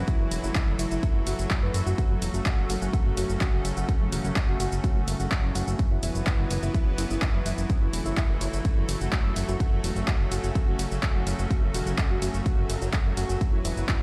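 Dark and hypnotic, this short cut from a longer melodic techno track moves in a straight four-four pulse, its harmony rocking between Esus2 and F# minor. An up-front electronic kick, punchy and tape-warm with a layered, produced edge, anchors the groove, while a dry, overdriven analog drum machine adds handclaps, hi-hat, ride cymbal and shaker, the cymbals, hats and percussion all carrying sidechain pumping. A fat, saturated sawtooth bass sits low and thick near the front, its sustained notes pumping in the same way. Above it, a lush unison pad of detuned sawtooth and square waves holds bright, slow-blooming chords with chorus and a long release, and a soft, round pluck spins arpeggios high in the register, its gentle, decaying tone shaded by subtle chorus and tape echo. The sound is fairly dry overall, though a hint of stone room reverb gives the sense of a big sound system playing in a bare space.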